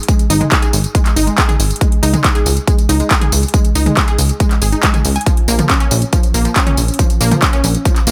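A punchy, layered electronic kick drum sits up front and drives this short, euphoric uplifting trance clip in a straight 4/4. Around it, a big-room dance drum kit adds handclaps, tambourine, toms and metallic hi-hats, also placed close and forward. A plucky analog bass enters at 0.3 seconds, blending sawtooth, square and triangle tones with wave-folding and tube saturation for a funky, biting low end that pumps against the kick. Above it, a lush unison pluck of detuned sawtooth and sine layers plays arpeggios through a delay, its quick filter attack decaying as it breathes with the same sidechain pumping. The harmony moves from Ab5 to Db5 at 1.8 seconds and then to Bb5 at 5.3 seconds, and the dry, loud mix keeps every hit crisp and immediate.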